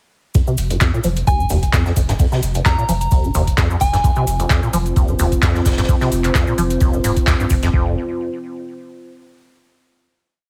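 Trippy, driving acid house at 130 BPM in F minor with a light 16th-note swing, built on an overdriven deep four-on-the-floor electronic kick and a squelchy, resonant square-wave acid line that runs a filter sweep from 0.3 to 7.7 seconds, while a round sine sub bass plays off-beat, an analog drum machine adds metallic hats and claps, a grainy cabasa and a looped acoustic breakbeat sit in the background, a soft, warbling FM bell plays short answering phrases from 1.3 seconds, a dark, detuned analog pad enters at 4.0 seconds, and the whole piece carries a heavily compressed radio sound before closing on a final chord at 7.7 seconds.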